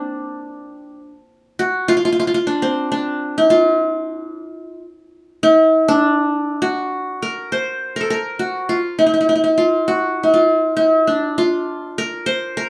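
Arabic music with a festive yet stately bearing unfolds in a steady, straight 4/4 as a solo qanun carries the whole 12.7-second excerpt. The acoustic qanun sits up front, its triple strings plucked with fingerpicks for a bright-edged, glittering tone. Its lines stay in the middle register, moving between Bb3 and C5 and coloring the music with the distinctive flavor of maqam saba. The performance falls into two sections, with a fresh passage beginning at 7.5 seconds. A moderate studio ambience gives the instrument a natural sense of space, as if heard in the same room as the player. The clip is cut from a longer piece.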